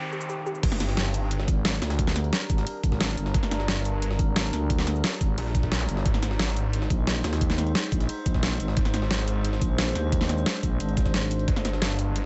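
Dark technical drum and bass at 177 BPM in G phrygian, aggressive and futuristic, this excerpt opens on a noise sweep and zap, a brief soft, round pluck arpeggio on G4 with tape echo, and a metallic, inharmonic drone that hangs eerie, chorused sustained chords over the whole passage. The drop lands at 0.6 seconds, where a snarling, detuned saw bass with a moving notch and heavy distortion pushes up front on notes between G1 and Bb1, joined at 1.5 seconds by a thick, growling FM bass with tube saturation. The drums stack an overdriven, knocking electronic kick with an up-front dubstep kit of deep snare, bright hats, shaker and crash, while a gritty, pitched-up jungle sampler kit with a high-tuned snare sits very quietly underneath in a large-room sound. The harmony moves from Gm to Ab at 6.1 seconds and back to Gm, with sidechain pumping on the drone and pluck and another short zap near the midpoint. 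The mix is dry and dark, its top end rolled off, leaving the overdriven low end to dominate.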